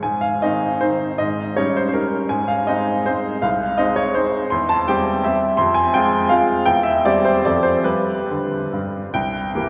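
Heard from further back in a wet cathedral reverb with a 5.0-second decay, this proud, graceful passage cut from a longer romantic classical piece is a triple-time dance in 3/4 with dotted rhythms for a bright, brilliant solo baby grand piano with long sustain, ranging from C2 to C6 at a rubato 131-183 BPM and moving from A-flat major into C major at 4.5 seconds before closing on a C7 chord at 9.1 seconds.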